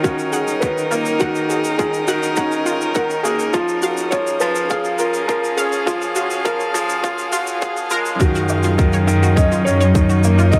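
A tight, tape-toned electronic kick drum drives a straight 4/4 pulse, with a warm, rolled-off shaker and woodblock ticking beneath it, in this tender, hopeful excerpt of piano and strings electronica. A mellow, felt-muted upright piano carries the melody through delay, while a brilliant grand piano plays a short-sustained riff up front, a bowed string quartet holds focused, vibrato-touched chords that pump against the kick, and a very quiet detuned sawtooth pluck ripples arpeggios under chorus. The build-up gives way to a drop at 8.2 s, where a dark, reedy chamber cello section enters on a saturated, pumping bass note, all set in a huge ambient reverb.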